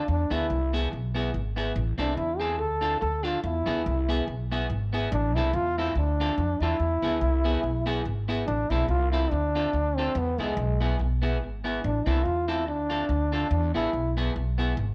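A breathy, whispered trombone carries the melody up front with vibrato and a soft attack, giving this mischievous, energetic ska cut at 143 BPM an intimate, pop-styled lead over a lightly swung 4/4. Beneath it, a clean, picked semi-hollow electric guitar adds accompaniment touched with tape echo, while a woody, thumpy pizzicato upright bass on gut strings sits close in the mix. The short fragment cycles through E, Am and Dm across two matching passages, the second beginning at 8.5 seconds, all wrapped in a moderate echo-chamber reverb with small-room ambience.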